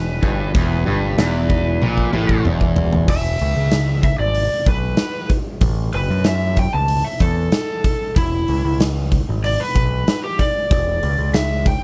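A dry, up-front recording of driving, swaggering blues rock and southern rock in a power-trio vein opens with a bright, double-tracked semi-hollow guitar riff, a warm slide guitar melody with slapback echo and growling overdriven picked bass, joined a moment later by a huge arena drum kit with punchy kick and a pumping room, until a drum fill from 1.8 seconds hands off at 3.1 seconds to a slide guitar solo that carries this cut from a longer piece to its end.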